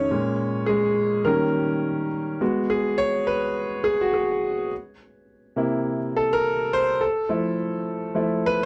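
Soul piece at 104 BPM in 4/4 with a lightly swung sixteenth feel, cut from a longer work, where a clear, up-front concert grand piano plays alone for the full 8.7 seconds across a range from F2 to Eb5, its deep bass and natural tone set in a dry, close 1970s-style studio sound with light reverb, moving through A#m7, D#7, G#m7, C7 and Fmaj7 in a bittersweet, smooth mood.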